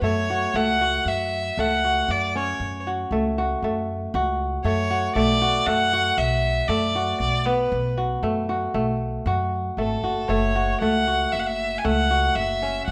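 From the first moment, a rich, smooth bowed violin with vibrato carries the melody over crisp, ringing fingerpicked kora arpeggios and a woody, thumpy pizzicato upright bass in this restless, pensive piece of contemporary chamber music in 5/4, which moves from F#m to Bm7 at 5.2 seconds and back to F#m at 10.3 seconds within a moderate recital hall reverb, cut from a longer work.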